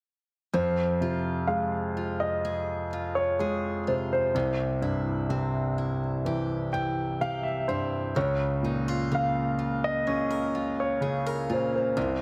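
A dark, mellow grand piano carries a longing melody from 0.5 seconds over a clear, intimate second grand piano with audible action noise and long sustain, alongside the full-bodied arpeggios of a picked steel-string acoustic guitar with finger squeak. This slow, heartbroken pop excerpt at 63 BPM in F minor moves through Fm, C and Bbm/Db, with a grand piano fill from 6.3 to 8.2 seconds. Light reverb and a small room ambience frame the parts, with the polished accompanying piano sitting up front.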